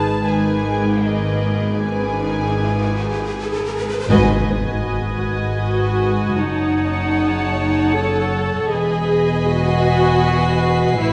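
Drenched in the long reverb of a scoring stage and dark at the top, this eerie, mysterious cinematic passage in 3/4 is cut from a longer piece and carried by bowed string sections played sul tasto with soft attacks. A pure, floating violin melody sits over a rich, distant second violin line. Intimate, up-front violas with light vibrato supply the accompaniment, while close cellos and smooth double basses hold the low end, and a faint high violin texture hovers in the background. An electronic riser builds from 1.6 seconds into an impact at 4.1 seconds, where a very quiet, articulate timpani stroke on calf heads, hit with hard mallets, marks the shift as the harmony moves from G#m toward Emaj7.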